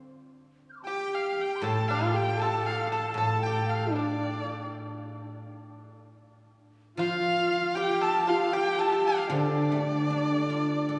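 Chinese traditional chamber music in D yu mode, tender and wistful, flows at a rubato 78 BPM as a clear, focused erhu carries the bowed melody up front with vibrato and portamento, shadowed by a dark, husky horsehead fiddle and a dry, percussive fingerpicked pipa, while a hollow bamboo dizi with a buzzing membrane drifts in the background from 0.7 seconds and a ringing, silvery guzheng joins at 1.6 seconds as accompaniment, the ensemble bathed in a lush cathedral reverb in this short passage cut from a longer piece.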